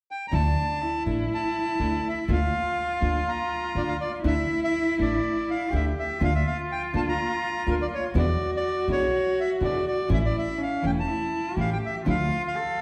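Rubato at 123 BPM in 4/4, this sultry, melancholic tango in D harmonic minor, cut from a longer piece, puts a reedy, bright, close-miked bandoneon melody up front from 0.1 s over a bowed, sul tasto cello second line with a soft attack and light vibrato, a fingerpicked nylon-string guitar with fresh strings, and a woody, thumpy pizzicato upright bass on gut strings, set in a wet large studio reverb heard from further back in the room as the harmony moves from Dsus2 and Bb/D through E7 and A to settle on Dm at 12.1 s.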